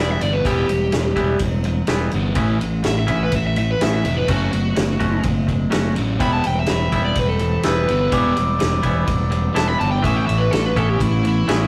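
A biting overdriven guitar solo in E dorian rides over a sludgy distorted riff, a bright clean twangy guitar line and a punchy fingered bass from the start, with a loose, distant-sounding drum kit of kick, snare and dark ride cymbal joining at 0.2 seconds in this cool, moody indie rock fragment at 125 BPM. The solo carries spring reverb as it moves over chords of Em, Aadd9 and F#m. At 6.2 seconds a mellow, bell-like glockenspiel adds a second line while a very quiet percussive tonewheel organ with key click and slow rotary speaker holds sustained chords, all captured with a rough rehearsal-room feel and tube saturation.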